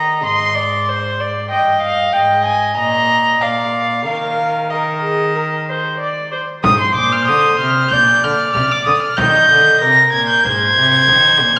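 This renaissance-style consort dance in classical style moves at 94 BPM in a straight 4/4 in Eb major, with a stately, festive mood, and it is cut from a longer piece. A single bowed violin carries the melody up front, high in its range with light vibrato, while one viola plays a second line beneath it and one cello, with light vibrato and a nasal, distant character, holds the bass. The three strings share a reedy, gut-string, period-style tone, the violin and viola sounding warm and the cello rich. At 6.6 seconds a deep, large frame drum joins, played with hard hands in a live room, as the opening phrase begins again over chords moving through Ab, Bb and Eb. The ensemble sits in a wet recital hall reverb that lends the dance a spacious, ceremonial air.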